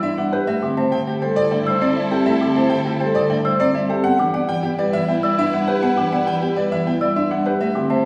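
Bathed in a wet recital-hall reverb, this short cut from a longer minimalist classical piece in 3/4 feels urgent and hypnotic. An intimate grand piano with audible action noise carries the melody up front, while a woody, rustic marimba supplies the accompaniment and a dark, ringing vibraphone and a delicate, bell-like celesta in the background spin arpeggios. A lush string section with vibrato and portamento holds sustained chords as the harmony moves from C6 at 0.5 seconds to G6 at 4.0 seconds.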